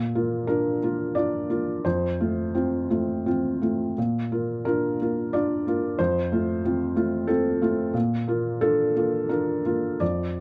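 A felt-muted upright piano plays alone, soft and mellow, close and dry in the manner of a 1970s studio, as this tender, intimate neoclassical minimalist fragment, cut from a longer piece, sways in a rubato three-beat pulse between Bb and F chords across its 10.4 seconds.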